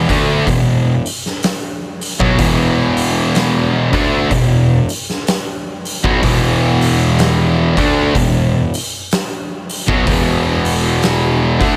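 Swung at a slow 62 BPM in 4/4, this hypnotic, sludgy stoner and doom metal excerpt grinds on an E5 riff played by a bright, double-tracked overdriven electric guitar over two thick fuzz guitars sitting in the background, one dark and one warm, a growly, overdriven picked bass, and a gritty, oversized low-tuned drum kit that sits up front with a boomy kick, fat snare and hi-hat in a big, pumping room under light reverb.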